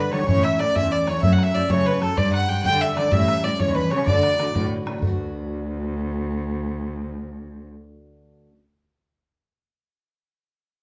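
Heard from somewhat further back in a studio with wet reverb, this short cut from a longer piece is a lively, rollicking Celtic jig in D major at 126 BPM in 6/8. Up front, a single clear, airy-bowed fiddle with a nasal edge leads the melody while a reedy, close-miked accordion carries a second line, both stopping at 4.7 seconds. A picked dreadnought acoustic guitar keeps the accompaniment going until 8.6 seconds, a dark, veiled, muted cello bowed with vibrato holds the bass, a boomy, open bodhran drives the percussion, and the chords move from A through F#m7, G and A7 to D6.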